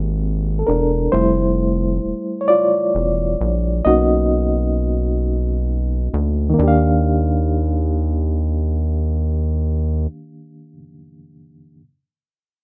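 Intimate and tender, this slow six-eight R&B fragment of a longer piece features a reedy, lightly overdriven electric piano with fast tremolo taking a solo through the first 6.6 seconds over lush major-ninth chords, while a rubbery, hollow square-wave bass sits up front until 10.1 seconds, all in a rough home demo mix with light reverb.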